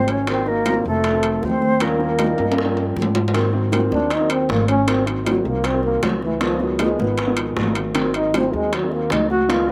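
This lively, sunny Afro-Cuban jazz excerpt opens with a dark, breathy trombone carrying the melody up front, joined by a mellow, airy jazz flute on a second line that drops out at 3.0 seconds, over a boxy upright piano with audible action noise and a growly, woody pizzicato upright bass. At 156 BPM in a straight 4/4 in Ab mixolydian, the harmony moves through Ab9, F7b9 and Eb9 before settling on Ab9, Db9 and back to Ab9. Congas, round low-tuned bongos and metal-shell timbales come in at 0.1 seconds, the congas ringing and high-tuned in the background, the timbales compressed and saturated, with slapback echo on the bongos and timbales. A drum fill leads into a trombone solo from 3.3 seconds, its whispered, soft-attack tone carrying a slapback echo of its own. The recording was made outdoors with little reverb, giving the parts a dry, close sound even where the percussion and flute sit distant in the mix.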